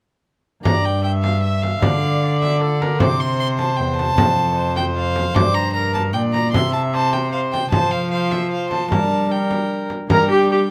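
This classical excerpt is a renaissance-style consort dance in 3/4, solemn and courtly in mood, with a straight feel. A single bowed violin carries the melody up front with a close, reedy gut-string tone in period style, while a lone viola plays a second line from a more distant place, its sound touched with light vibrato. A bowed cello holds the bass with the same rich, period-style timbre, and a concert harp supplies mellow, ringing fingerpicked accompaniment. A frame drum, played with hard hands and heard in a small room, adds warm percussion from 0.7 seconds until 10.3 seconds. The harmony moves through G minor, D minor, C and F before returning to G minor, and the whole is captured with close, detailed microphones and light reverb.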